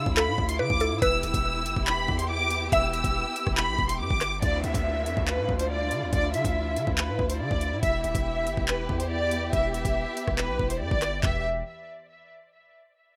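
Heard through a digital ambience with the rough balance of a home demo, this cold, dark drill excerpt moves in a half-time feel. An up-front studio violin section carries the melody in a high register, its bowed ensemble tone lush and smooth with even vibrato, while a darker symphonic string section holds sustained chords beneath it with expressive vibrato. A distorted 808-style bass brings an aggressive, heavy low end, its sine core roughened by a noise layer and a fast attack that decays. The electronic drill kit combines a knocking kick, metallic hi-hats, handclaps, rim clicks and toms, all pushed through overdrive. A woody, round FM pluck with chorus and delay adds a brief second line from 0.2 to 3.1 seconds, and an electronic downlifter sinks into the background between 4.4 and 7.8 seconds as the harmony moves between Dmadd9 and Em.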